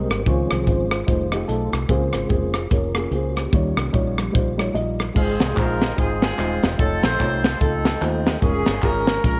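Soulful and uplifting, this short cut from a longer uptempo gospel piece moves at 147 BPM in 4/4 with a swung feel in Ab major. A soft, flute-like tonewheel organ takes the solo spotlight for the first 5.2 seconds, its sustained chords colored by slow rotary speaker and chorus vibrato as it sits in the background. Beneath it, a dark, woody upright piano with a slightly detuned, boxy character plays accompaniment, while a fingered electric bass gives a foam-muted, direct low end and a crisp fusion drum kit drives things up front with a punchy kick, high-tuned snare, rim clicks, hi-hat and dark crash cymbals. At 5.2 seconds a tight, mellow horn section enters with the melody, joined in the background by tambourine, maracas and group handclaps recorded in a live room. The harmony passes through rich chords such as Dbmaj7, Bbm9 and Eb9 before moving on to Ab6, F7b13 and Bbm7/F, all wrapped in light reverb and small room ambience.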